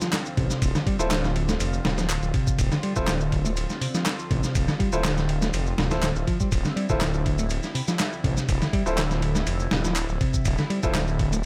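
A swung, funky breakbeat groove drives this gritty excerpt from a longer piece, built on a dusty, sampler-style drum kit with a thumpy kick, medium-tuned snare, hi-hat and ride, overdriven and re-recorded in a small room so it sits up front. Electronic shaker and layered handclaps, also pushed into overdrive, fill out the percussion. Underneath, a detuned sawtooth bass arrives at 0.4 seconds, thick, beating and menacing, while a bright, growly picked electric bass plays a riff coloured by 12-bit sampler grit and analog delay. From 1.0 seconds a clear, intimate grand piano adds stabs, its action noise audible and its tone natural, trailed by analog delay echoes. In the background, a swirling, evolving analog pad holds sustained Dm7 chords through phaser and chorus, pumping with sidechain compression, all within a lightly reverberant, echo-heavy mix.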